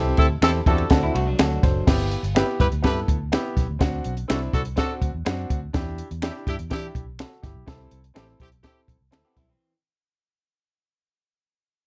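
A dry, close-sounding excerpt of joyful, uplifting 1960s-style soul at 124 BPM in G major, where a punchy, up-front cocktail drum kit with a high-tuned snare drives a round, foam-muted fingered electric bass, a woody upright piano, a present horn section with light vibrato, close, human finger snaps and a slightly broken-up electric guitar riff that appears at 1.0 and 9.2 seconds, opening on a band accent before fading out from 1.9 seconds over chords moving from C6 through D7, G6 and Em7.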